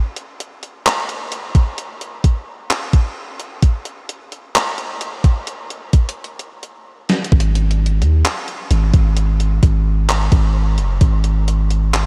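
Contemporary R&B with a moody, sensual air, this excerpt from a longer piece opens on an up-front, sampler-style 80s drum machine of handclaps, hi-hat, a thumpy kick and a snare drenched in gated reverb, all set in a light reverb. After a drum fill at 6.4 s, a deep 808-style bass enters at 7.3 s with long, mellow sine tones that strike fast and then decay.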